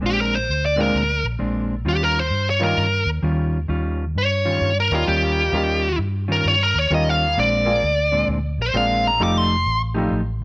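A swung 131 BPM electric blues shuffle in 4/4 with a swaggering, gritty mood, cut from a longer piece, where a smooth overdriven lead guitar solos up front with plate reverb over a dark, clean rhythm guitar riff, a round, punchy foam-muted fingered bass, and a bright, woody, slightly detuned upright piano entering at 0.8 seconds with audible action noise, all moving through Bb9, Eb9 and F9 chords in a moderate club room.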